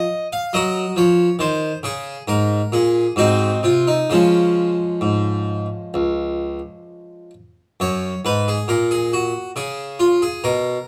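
Dance-like and radiant, this excerpt from a baroque-style suite movement for solo harpsichord moves at a rubato 64-70 BPM in 4/4, its plucked, full Flemish-style tone on two sets of strings sitting up front in a moderate studio reverb as it shifts from Db major to F# major at 7.8 seconds before the cut at 10.9 seconds.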